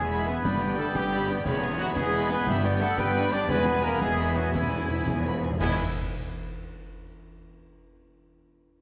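A heroic adventure film cue in 6/8 at 117 BPM opens with strings, winds, brass and harp entering together: a lush, warm violin section carries a focused, smooth-topped melody, with an airy flute group, vintage oboe, bright clarinet, a dark, woody second violin section and portamento-tinged violas weaving supporting lines. Mellow trumpet stabs and sustained mellow French horn chords ride over dark cellos and rich, distant double basses, while a very quiet, ringing harp spins arpeggios and a close concert snare, bass drum, toms and bright cymbals drive the pulse from 0.3 s. Round, soft-mallet timpani join at 1.5 s and fill from 3.5 s before an up-front crash of cymbals and bass drum at 5.6 s, all bathed in a wet scoring-stage reverb in this soaring, adventurous fragment cut from a longer piece.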